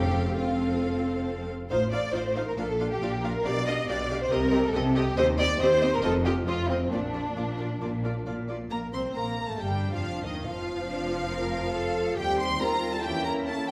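A rich, up-front second violin line stands out in this cheerful, spirited classical-period orchestral movement in Bb major, moving quickly at 138 BPM in a straight 4/4, while the first violins carry a smooth melody above it with vibrato. Violas fill out the accompaniment, focused cellos and distant double basses with portamento supply the bass, hard-mallet timpani on F2 mark the opening half second, and a soft-attack French horn section enters at 8.7 seconds with sustained chords. The excerpt, cut from a longer piece, sits in a reverberant recital hall heard from further back in the room.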